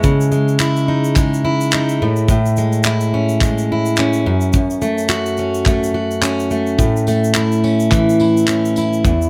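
A dry, close-sounding excerpt of easy-going, carefree acoustic pop with a light sixteenth-note swing, built on an up-front, full-bodied jumbo steel-string guitar whose picked chords carry audible finger squeak, over a modern studio kit with a punchy kick, handclaps and tambourine and a rolled-off top, while a grainy egg shaker sits in the background, all moving from C#madd9 through Amaj7 and F#m before shifting to A at 6.8 seconds.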